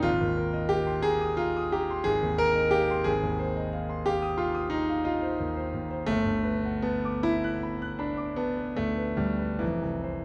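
Set in a rubato 9/8, pulsing slowly at 47-62 BPM in dotted quarters, this nocturnal, hazy fragment of impressionist classical music is cut from a longer piece, with the piano tuned to A4 = 441 Hz. A clear concert grand plays alone and up front from F1 to F#6, its smooth, vintage tone anchored by a deep bass, and it drifts from Abmaj9 to Gmaj9 at 6.1 seconds before settling on an open, third-less Fmaj7 at 9.6 seconds. A moderate recital hall reverb of 1.4 seconds and a dark production cloak the piano in soft shadow.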